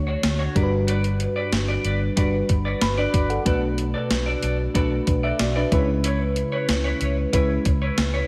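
Moody and dramatic, this short excerpt of 1980s-style pop moves at 93 BPM in a straight 4/4, with a soft, dark FM electric piano up front through chorus, a round, foam-muted fingered bass, a clean picked guitar riff bathed in lush chorus and digital delay, and a thumpy, tape-tinged drum machine whose snare is cloaked in gated reverb, as the piano slips in a fill from 2.5 to 3.5 seconds over chords drifting from Dmaj7 and Gmaj7 to Bm7 and C#m7.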